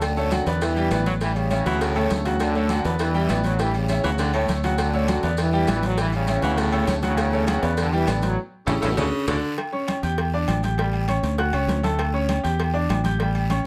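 Close, detailed microphones and light reverb give this joyful, sunny salsa excerpt at 200 BPM in D major a crisp sound, with a round fingered electric bass up front and a polished concert grand piano accompanying over Dmaj7, Em7 and A7 changes. A bright trombone section with light vibrato carries the melody until 9.3 seconds, joined by a smooth-topped baritone saxophone on a second line, before a drum fill and band accent at 8.4 seconds lead into a new section at 9.6 seconds. Behind them sit a tight, high-tuned cowbell, ringing agogo bells and timbales, a raspy guiro, grainy maracas and very quiet, vintage-toned congas.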